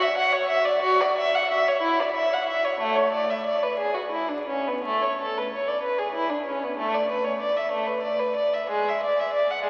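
A single violin carries this short excerpt, its rich, reedy gut-string tone played in period style and placed close and up front. The music is a baroque-style suite movement for unaccompanied violin in A major, moving in a lilting 6/8 at roughly 55-64 BPM counted in dotted quarters. The bowed line ranges from G#3 to F#5 with a flexible rubato, giving the piece a dance-like, radiant character. A new section begins at 4.8 seconds, carrying on until the fragment ends at 9.7 seconds. The sound comes from a very old 78 rpm record, with vinyl crackle, a faint mains hum and a long, wet cathedral reverb that lingers around the instrument.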